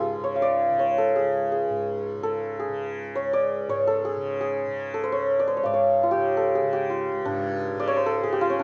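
In straight 4/4 at 167 BPM and speeding up throughout, this short fragment of Hindustani classical music sets the raga Puriya Dhanashri in Db, tuned slightly below concert pitch, with a radiant, devotional mood. An up-front, hammered santur carries the ringing melody across its range, while a softly plucked, buzzing tanpura sits lower and quieter as a bright drone, both playing from the start to the close at 8.6 seconds, with a new passage beginning at 7.3 seconds. The sound is dry, captured outdoors with little reverb.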